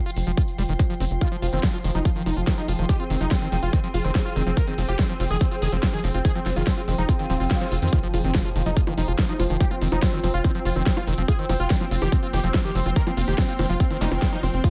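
A swarming, tense drone and a dark, warbling lo-fi pad open this driving psychedelic trance excerpt in F minor at 143 BPM, both sitting in the background and pumping against the punchy, up-front electronic kick, the tight sawtooth sequencer bass and a big-room dance kit with a huge snare, metallic hats and bongos, while a squelchy, gritty acid bass riff echoes behind them. From 1.2 seconds a thick, detuned unison lead carries the melody with a bright, wave-folded edge, phaser, vibrato and tape echo. Very quiet electronic effects enter at 7.2 seconds with a rising swell and, after a band accent and drum fill, the track hits its drop at 7.9 seconds with an impact, later joined by a zap, the whole mix staying dry and close.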